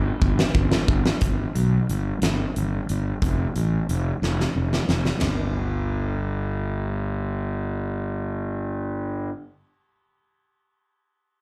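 A growly, overdriven fuzz bass opens this restless, cathartic quiet-loud alternative rock excerpt in G mixolydian at 60 BPM in a straight 6/8, joined almost at once by a huge arena drum kit whose fat snare and punchy kick, set up front in a big room, play fills at the start and again around 4.2 seconds before the drums stop at 5.4 seconds, leaving the bright, up-front bass alone in the club-like live sound until 9.3 seconds.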